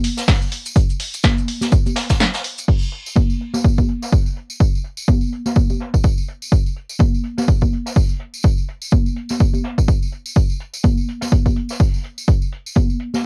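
The electronic kick drum stands out most, a punchy, tape-warm analog thump sitting up front from 0.3 seconds nearly to the end of this energetic, bittersweet house excerpt at 125 BPM in 4/4, with a 57% swing on the sixteenths. At the start, a punchy analog drum machine adds crash cymbal, hi-hat, shaker and a punchy snare, also tape-colored and up front, before it stops at 2.8 seconds. Beneath it, a jazz brush drum kit plays hi-hat and a medium-tuned snare with a natural studio-room sound, filtered and run through cassette tape at a low level. Ringing acoustic tambourine and congas sit close throughout, entering at 0.2 seconds. A short break with a band accent at 2.2 seconds leads into the longer second section, and the whole has the light reverb of a home cassette recording.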